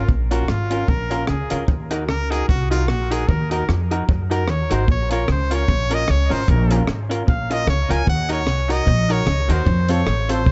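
Heard through light reverb with a softly rolled-off top, this energetic, mischievous ska cut in Bb minor at 150 BPM, swung and moving from Bbm to Ebm before landing on F, sets a bright, forceful trumpet solo with light vibrato and dub echo over a woody, thumpy pizzicato upright bass up front, a compact cocktail kit of hi-hat, punchy kick and rim click, a slightly broken-up, lo-fi electric guitar through a small old amp, worn, slightly detuned upright piano stabs with their own dub echo, and a clean semi-hollow guitar riff sitting in the background.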